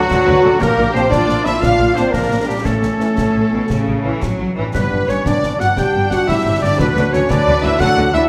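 Adventurous and triumphant, this heroic film-score passage, cut from a longer piece, moves in a broad 12/8 at 117 BPM counted in dotted quarters. A clear, intense violin section carries the melody, set against second lines from a very quiet, rich violin section, a distant, roomy oboe, a very quiet vintage-toned clarinet, and a mellow, hollow, airy flute ensemble. Beneath them a dark, soft-attacked French horn section holds sustained chords and sits prominently in the mix, joined from 0.4 seconds by a very quiet, tight trombone section. A smooth, even viola section fills the background, while clear cellos and expressive double basses anchor the bass and a very quiet, ringing concert harp adds fingerpicked arpeggios. Concert snare, bass drum and clash cymbals with bright cymbals drive the pulse, and the harmony moves from D through Bb, A and G back to D, all bathed in a wet scoring-stage reverb.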